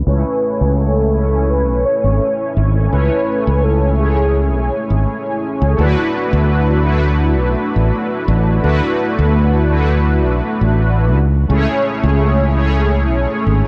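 Dreamy and nostalgic, this vaporwave fragment, cut from a longer piece, opens with a velvety, detuned synth lead carrying the melody through chorus and tape echo until 5.1 s. Beneath it, mellow, brassy synth brass chords run the whole length with analog chorus, tape echo and a filter sweep, while a fretless electric bass sits direct and up front, warm in tone, as the harmony moves from Amaj7 to D69 at 5.8 s and returns to Amaj7 at 11.1 s. The dark, warm production carries a low-pass filter, light reverb and digital ambience.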